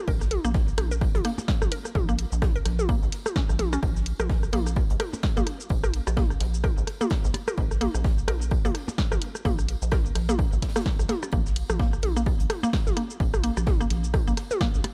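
Minimal techno at 128 BPM in 4/4 with a 58% swing on the sixteenths, this cool, sparse fragment is cut from a longer piece and runs about 15 seconds. An up-front electronic kick drum, analog and punchy and re-recorded in a large room, anchors the groove, joined by a punchy analog drum machine with cabasa, hi-hat and snare, and a minimal click drum kit of percussion blips, rim clicks and toms treated with tape echo. Beneath them a rubbery square bass sits on Bb1, its hollow, bouncy, wave-folded tone shaped by a resonant filter pluck and a moving notch, pumping against the sidechain. A mallet-like synth pluck carries the riff between Bb3 and Bb4, its woody, nasal FM tone thickened with chorus, sidechain pumping and tape echo. In the background a crisp fusion drum kit adds hi-hat, a high-tuned snare and tambourine in a gritty, saturated small-room sound, its hats and percussion high-passed and pumping. 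The whole is wrapped in digital ambience with a dark production.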